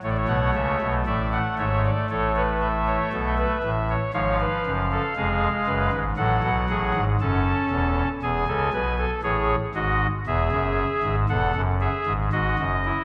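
A soft-reed pipe organ sounds up front on a reedy oboe stop with tremulant and baroque voicing, carrying this joyful, elegant baroque-style four-part fugue in a 13.0-second passage cut from a longer piece, its lines spanning deep bass notes to the upper register and blooming into a lush scoring-stage reverb.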